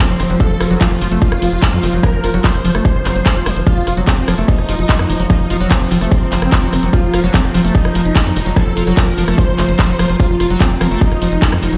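Psychedelic and alien, this short cut from a longer psychedelic trance piece drives along at 147 BPM in a straight 4/4, centred on an F5 chord. A huge, detuned supersaw carries the melody, thickened by a phaser and digital delay and pumping with sidechain compression beside the tight, up-front electronic kick, while a squelchy, resonant acid bass riff sits in the background with chorus and tape echo. Beneath them, a punchy sequencer bass with a filter pluck and ring-modulated edge drives the low end, and a layered garage kit of handclaps, hi-hat and rim click adds small-room ambience. An overtone-sweeping drone holds sustained chords and a warbling, lo-fi pad adds nostalgic texture, both sitting back in the mix with chorus and reverb. A very quiet, nasal wobble bass surfaces briefly at 4.3 seconds and again at 10.8 seconds, and the whole mix sounds as if played on a big system in a bare stone room.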